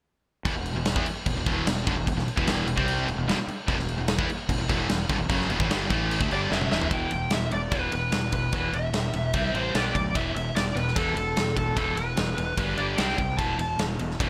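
This hard rock excerpt has a small-room ambience, with a big acoustic drum kit up front and a thick wall of overdriven guitars behind it, setting a menacing, heavy mood in a straight 4/4. Three rhythm guitars carry the riff from 0.5 seconds: a bright cranked stack guitar, a double-tracked distorted electric guitar that drops out at 6.9 seconds, and a hollow-bodied overdriven semi-hollow guitar, all picked and sitting in the background. Underneath, a fingered electric bass with growly fuzz and punch anchors the low end, while the dark, smooth drums bring a punchy kick, a medium-tuned snare, rolled-off crash and ride cymbals, and toms, with a fill leading into the second section. A high-gain lead guitar enters at 6.3 seconds and rides up front with a warm, distorted tone, playing the melody high above the riff. The harmony moves from E minor into power chords on E, C, B and G, keeping the heavy, driving weight through to the end.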